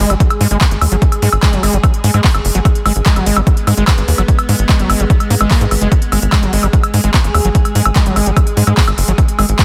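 An intense psychedelic trance piece at 147 BPM in G# minor opens with a tight, nasal sawtooth sequencer bass, a big-room dance kit of handclaps, crisp hi-hats and woodblock, a screaming, squelchy distorted acid riff with resonant filter sweeps, chorus and tape echo, and a morphing, detuned wavetable pad holding sustained chords. A punchy, up-front electronic kick arrives at 0.2 s to drive it all, with the riff and pad pumping under sidechain in a dense, heavily limited mix.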